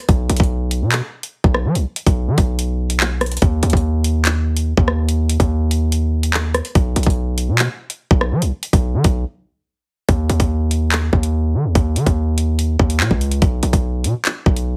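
Cold and dark, this drill excerpt runs at 144 BPM in 4/4 with a half-time feel. A hard-hitting 808-style bass sits up front throughout, its punchy, heavy sine tone carrying a noise layer with a fast attack and decaying tail, ranging from B1 to F#3. An electronic drill drum kit plays alongside it from 0.1 seconds, with a knocking kick, metallic hi-hats, handclaps and rim clicks placed close and present in the mix. A break arrives at 9.3 seconds before the music moves into a new section at 10.1 seconds, continuing until the cut at 14.8 seconds. The sound is dry, with little reverb, and heavily compressed with multiband processing for a radio-ready style.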